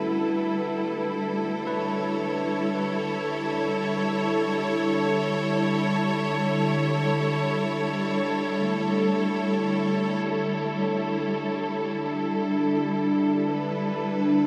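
Serene and weightless, this ambient passage, cut from a longer piece, floats in free time with a sense of stillness. A lush symphonic string section sits up front, holding sustained chords with a focused, smooth-topped tone and gentle vibrato, softened by a low-pass filter and opening on a G69 chord. Beneath it, a string-like drone with a sawtooth edge and a ring-modulated, slightly tense shimmer fades in over the first 10.2 seconds, its slow attack and long release blurring into its own reverb. A bell-like tine electric piano traces very quiet, clean arpeggios until 11.0 seconds, adding a bright glint to the blend. The whole blend unfolds in a vast, echoing space with a huge eight-second reverb tail, and a new section begins at 10.2 seconds as the strings and drone carry on to the close at 14.5 seconds.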